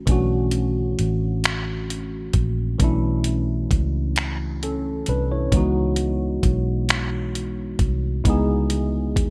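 Yearning and late-night in mood, this slow six-eight R&B excerpt moves at 44 BPM in B dorian, with the tuning set at A4 = 436 Hz. A worn tine electric piano carries the accompaniment, slightly out of tune and heard through its built-in speakers, its warm, clean tone colored by analog chorus as the harmony shifts from Bm11 to C#m11 at 5.5 seconds. Beneath it, a vintage muted fingered electric bass sits up front with a dark, round, punchy sound from its foam-muted strings and amp. The dusty soul sampler-style drum kit enters at 0.1 seconds with finger snaps, hi-hat and a thumpy kick, gritty and compressed, its gated reverb adding a clipped tail. Light digital ambience and a bright 1980s-style production frame the whole short passage.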